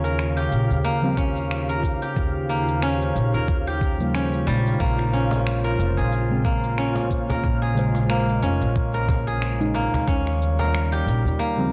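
A bright, silvery steel-string zither played with fingerpicks rings up front in arpeggios through analog delay, over a warbling, nostalgic tape-like pad with chorus and reverb, a woody pizzicato upright bass, and a very quiet twinkling granular texture in this hypnotic, earthy organic downtempo excerpt at 91 BPM with a swung 16th feel. Electronic cabasa and finger snaps, re-recorded in a large room, tick along from 0.1 seconds. Muted, dark felt-like synth keys join in the background at 1.0 seconds, a gritty, thumpy sampler-style kick enters at 1.2 seconds, and a snappy acoustic cajon sits back from 5.3 seconds. The chords move from Eb13 to Bbm9 and back, with the pad, bass and keys pumping under sidechain compression in a dry, gritty mix carrying cassette tape and transformer saturation.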